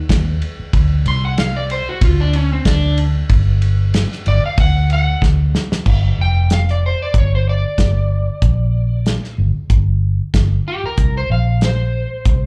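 A slightly broken-up electric slide guitar, played with fingerpicks and carrying a slapback echo, enters at 1.1 s and takes a solo through the opening section of this smoky, soulful straight-eighth soul blues in G minor at 94 BPM. Underneath, a round, foam-muted fingered electric bass and an acoustic soul drum kit with a fat snare, tight kick and dark cymbals sit up front, and a drum fill at 5.2 s leads into the second section. The excerpt sounds like a live club gig heard through the venue's PA, dry with a hint of club ambience.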